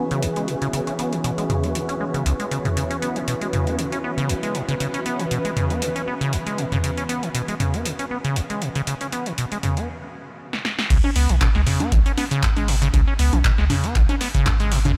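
A raw, trippy acid house cut in C# minor at 118 BPM with a light swing opens on a squelchy, resonant saw acid bass riff up front, a detuned unison pad holding C#m7 chords through chorus, phaser and sidechain pumping, and a blurred, wave-folded granular cloud pad drifting in the background. Alongside them, a punchy, tape-warm analog drum machine with metallic hats, handclaps, congas and toms plays under a huge, dreamy reverb. After a break at 9.9 seconds and a drum fill, the drop at 10.9 seconds shifts to a C#7 chord with its third omitted and brings in a thick triangle-wave saturated sub bass, a deep electronic kick and a barely audible gritty sampler-style soul kit.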